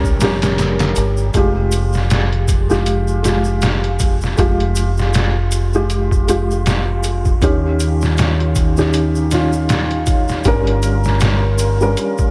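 A felt-muted upright piano helps set up this dark, hypnotic trip hop excerpt in F minor, its soft, intimate tone carrying audible action noise and colored by tremolo and tape echo as it plays the chords Gdim, Fmadd9 and Eb7. Beneath it, a deep dub fingered electric bass sits round and up front, playing until 11.9 seconds, while a sampler-style drum kit, compressed, pitched down and gritty, lays down a thumpy kick, a medium-tuned snare and hi-hat in studio reverb. The tempo is a slow 79 BPM in 4/4 with a 57% swing on the sixteenths, giving the groove a lazy, loping feel. A bright, vintage tube shaker adds a faint, band-limited layer of soft-handed percussion. From 0.1 seconds, a very quiet wind-like noise texture drifts in, airy and breathy with a slow attack and long release. The whole dreamy mix is soaked in a plate reverb with a 2.8-second decay, and the piece is cut from a longer work, ending at 12.3 seconds.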